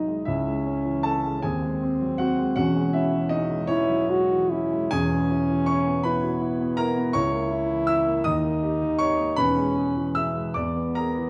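Yearning and solemn, this brief romantic classical passage, cut from a longer piece, sets a smooth-topped solo French horn singing a low melody over an up-front grand piano accompaniment spanning the keyboard, both unfolding with rubato in an unevenly pulsed 6/8 through a dark, reverberant recital hall, with harmony that moves from C#m through A#dim/C# and D# to a closing E7.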